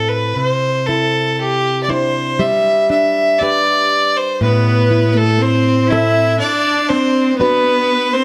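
A biting, earthy fiddle, played by one player with light vibrato, carries a longing, haunting Celtic slow air in A dorian at a rubato 60 BPM, over fingerpicked classical nylon-string guitar, with a focused, vibrato-laden viola adding a second line from 4.4 s, all heard through close, detailed microphones in a moderate recital-hall reverb in this short excerpt from a longer piece.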